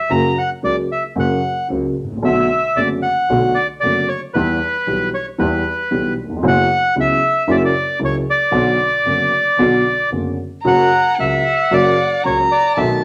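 A reedy, boxy bandoneon carries the melody up front in this sultry, dramatic tango fragment at 114 BPM with a rubato feel, over a dark, mellow, vintage-toned concert grand piano with deep bass and short sustain, a rich, smooth bowed double bass in the background with vibrato, and a single bowed violin that enters at 10.6 s with a soft attack, portamento and expressive vibrato, all moving through F#, Bm7, Em and F#7sus4 to F#7 and back to Bm in a moderate studio reverb.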